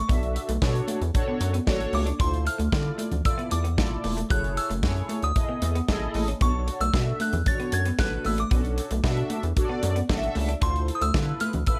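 An early-eighties boogie funk groove in B dorian at 114 BPM opens with a delicate, tinkling FM tine bell melody carrying chorus and tremolo, a twangy, slightly broken-up electric guitar riff through a small old amp with lush chorus, and a rubbery, bouncy square-wave bass up front, joined at 0.1 seconds by mellow detuned synth brass with chorus and phaser, a studio drum kit with a tight kick, and very quiet high-tuned congas, all moving through Bm9, Dm9 and F#m9 chords in a light small-room ambience for a danceable, funky feel.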